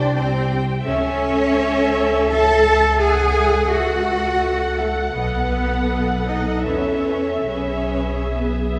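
Up front, the bowed cello section carries a lush, focused tone with a smooth top and warm vibrato, sitting beneath the upper strings in this serene, slow romantic movement for string orchestra. Above it, one violin section sings the melody with soft attacks, expressive portamento and a distant, lush sheen, while a second violin line sits in the background with its own gliding, vibrato-rich phrasing. The viola section fills out the accompaniment with a rich, even and smooth sound, and the double basses anchor the bottom with a close, rich, focused bowed tone. The phrasing breathes freely in a rubato three-beat metre, moving through an A-major chord over C#, a minor seventh and a B7 before settling on E over B near 7.5 seconds. A wet, spacious reverb in the manner of a church or concert hall wraps the ensemble, giving this short passage cut from a longer piece a warm, serene glow.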